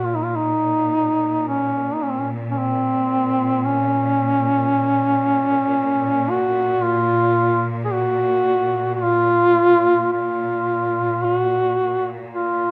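Caucasian folk lament in B-flat minor, longing and solemn, drifting in a free rubato around 55 BPM across this 12.7-second fragment of a longer piece, where a mellow, smooth-topped solo duduk sings the folk-style melody up front with vibrato, while a quieter symphonic string section sustains a bright, biting, lush bowed drone on B-flat with its own intense vibrato, all set in the moderate reverb of a recital hall.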